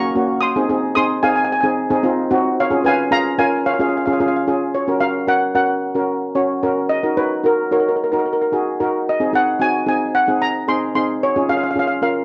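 Carefree and festive, this short calypso cut from a longer piece moves at 111 BPM in a straight 4/4, set in F# major. Two steel pans play throughout, both up front and both treated with a cassette tape character and plate reverb. The lead pan carries the melody in the upper register, struck with hard rubber sticks for a metallic, shimmering tone that sounds boxy, as if in a small room. Beneath it, a double seconds pan supplies the accompaniment with soft rubber sticks, giving a mellow, soft ring in a lower range. The harmony moves from G# to C# before a new section arrives at 4.7 seconds on F#, passing through D#m and G#7 and settling back on C#. The home cassette recording sits in a moderate studio ambience, lending the whole a homespun, lo-fi intimacy.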